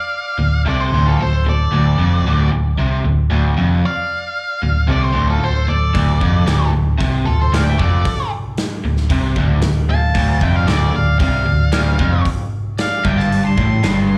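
This gritty, heavy blues rock and southern rock excerpt in D minor opens with two lead guitars together over a 114 BPM, straight 4/4 pulse. A dark octave-fuzz lead carries the melody, treated with distortion, plate reverb and slapback echo. Behind it, a twangy, compressed second lead with a slightly broken-up edge sits in the background. At 0.4 seconds a bright, double-tracked overdriven rhythm guitar arrives up front with a low riff and slapback echo, joined by a round, foam-muted vintage bass that anchors the Dm harmony. A big acoustic drum kit enters at 5.9 seconds with a tight kick, medium-tuned snare and hi-hat, sounding natural in a large room. The excerpt has the feel of a live club gig heard through the venue's PA, with light room reverb around it.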